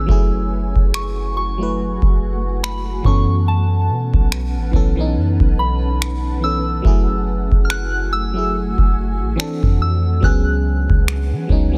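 A soft, pure synth bell carries the melody from the opening moment, treated with chorus, phaser and digital delay, over a glassy FM electric piano with a chorused shimmer, a blurred, evolving granular pad, and a round, dark 808-style bass. From 0.1 seconds a booming analog drum machine of deep kick and finger snaps sits up front, setting a late-night, moody contemporary R&B groove at 71 BPM with a 16th-note swing in F# minor. The chords move from F#m9 to B9sus4 and back before a closing turn through Dm9/F and C#7sus4, all in a dry, dense, heavily limited modern mix cut from a longer piece.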